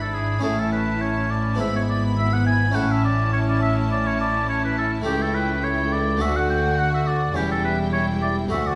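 Lively and festive, this brief passage, cut from a longer piece, is a baroque-style concerto movement in A major, moving at 104 BPM in a straight 4/4. A warm oboe sits up front as the soloist, carrying the melody with light vibrato and a vintage, classical-style tone, while a lush, smooth violin section also plays the melody higher up, sitting well back in the blend. A second, more expressive violin section holds a close inner line beneath them, and a viola section adds even, bowed accompaniment. A full Flemish-style harpsichord, plucked on two sets of strings and sitting mid-forward, spans the accompaniment from deep bass to the middle range. Cellos and a soft-attacked, dark double bass section anchor the low end, and the harmony moves from A through E/G# and A7/C# to D and C#dim/E, all set in a recital hall reverb with a 1.5 s decay.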